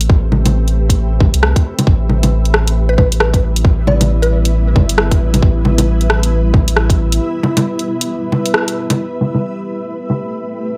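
Lightly reverberant and up front in its low end, this nocturnal, wistful future garage excerpt at 135 BPM in A minor swings its 16ths as a blurred, detuned granular cloud pad pumps through sustained Am9 and Em chords over a round, tube-saturated dub sub bass, a tight, overdriven electronic kick with a big-room reverb, and a tape-warm, layered garage kit of filtered bongos, hi-hat and rim click, while a woody FM mallet pluck with chorus, phaser and dub echo appears at 2.9 s before a break at 7.2 s and a band accent at 8.5 s.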